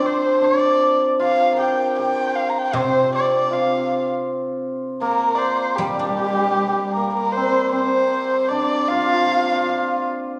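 Erhu, hammered dulcimer and guzheng begin together in this graceful, tender fragment of Chinese traditional chamber music, set in a G yu mode at a calm 78 BPM in a straight 2/4. The solo erhu carries the melody up front, its dark, nasal tone shaped by a soft attack, an airy bow, light vibrato and gliding portamento that feel close and intimate, with a slightly boxy edge. Beneath it, the hammered dulcimer plays a second line in a lower register, its bright, shimmering strokes ringing out just as prominently. Further back, the guzheng adds a quieter, silvery accompaniment plucked with fingerpicks. The music moves into a new section at 7.3 seconds, and the guzheng drops away shortly after, at 8.1 seconds. The erhu stops at 10.0 seconds, and the dulcimer rings on alone until 10.4 seconds, all of it set in a recital-hall reverb with a 1.4-second tail.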